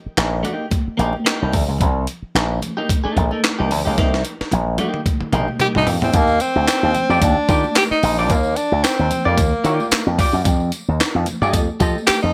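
A punchy slap bass run through an envelope filter anchors this driving, hypnotic funk excerpt at 111 BPM in 4/4, with a light 16th-note swing, moving over Cm7 before shifting to Ebmaj9 and then F9. Beside it, a gritty, compressed breakbeat kit with a thumpy kick, a high-tuned snare, hi-hat, toms and handclaps sits up front, its small-room re-recording giving it a sampled character, and a drum fill arrives at 4.0 seconds. A clean, twangy, scooped electric guitar picks out compressed accompaniment, while very quiet, high-tuned congas struck with hard hands sound distant in a large room. At 5.6 seconds a clear tenor saxophone enters with a jazz-style solo, present and up front, colored by vibrato and subtone. From 6.1 seconds a jingly tambourine adds shimmer from the background, and the overall sound stays dry and close, with little reverb.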